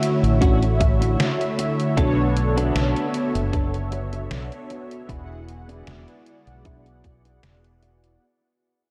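This vaporwave excerpt drifts in a nostalgic, woozy mood over a lightly swung 4/4 groove, moving through Dmaj7, Bm7 and E7 as it fades out. A brassy, detuned sawtooth synth brass sits up front with chorus, vibrato and analog delay. Behind it, a warbling, lo-fi tape-like pad holds slow-attack chords, its chorus and built-in reverb adding haze. A dark, round fretless bass enters at 0.2 seconds, and a clean, hollow-body electric guitar joins at 0.4 seconds with a fingered riff, its filter sweeping through a low-pass tone dusted with 12-bit sampler grit, ensemble chorus and delay. A thumpy electronic kick and a detuned 8-bit drum machine supplying hi-hat and a medium-tuned snare share a tape-warm, small-room character, while plate reverb soaks the mix in a dreamy glow.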